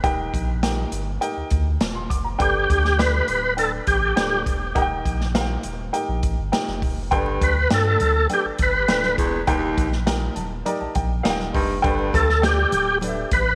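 Uptempo 1960s-style soul at 102 BPM, joyful and uplifting, with woody upright piano, deep round sub bass and an airy, punchy big-band drum kit underpinning a thick, gritty tonewheel organ melody that enters at 2.4 seconds with chorus vibrato, fast rotary speaker and tape echo, joined at 7.1 seconds by a raspy, distant baritone saxophone riff and very quiet, damped congas, with a piano fill at 10.1 seconds over Eb and Gadd9 chords in moderate spring reverb.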